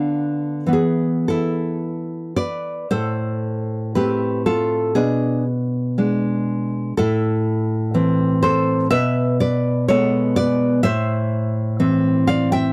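A romantic piece for solo classical guitar, this short fragment of a longer work moves at a slow, rubato pace of roughly 54-63 BPM in 2/4, set in A minor and tuned slightly sharp at A4 = 441 Hz. The mood is passionate and wistful, carried entirely by a fingerpicked nylon-string guitar with a deep classical tone that sits up front in the mix. The guitar ranges from A2 up to G5, opening on a Bdim/D chord that resolves toward E before the second section arrives at 2.9 seconds on A minor. From there the harmony drifts through G#dim/B and back to Am, reaching a richer Bm13 at 8.9 seconds before settling on Am again. The sound is dry and close, like a 1970s studio recording, with only a light touch of reverb around the instrument.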